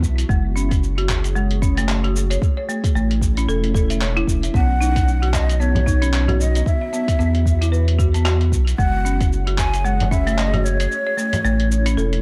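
This organic downtempo excerpt opens with a full band at 113 BPM in a swung 4/4: a woody, dry folk marimba struck with hard mallets plays rustic arpeggios through a digital delay, over a round, deep sine sub bass that sits up front and a blurred, evolving granular cloud pad that holds sustained chords in the background. A gritty, overdriven sampler-style soul kit of handclaps, hi-hat and shaker sounds compressed and re-recorded in a small room, layered with a deep, tape-warm electronic kick. The harmony moves through F#sus2, A, Badd9 and Esus2 before circling back, keeping a warm, earthy mood. At 4.6 s a breathy, end-blown ney enters with a tongued, vibrato-tinged melody, its reed-cane tone echoed by digital delay. A close acoustic frame drum adds brief touches in the background from 5.8 s, and the kick stops at 10.2 s, leaving the other parts to carry the final seconds. The production is dark and warm, with light reverb and a digital ambience.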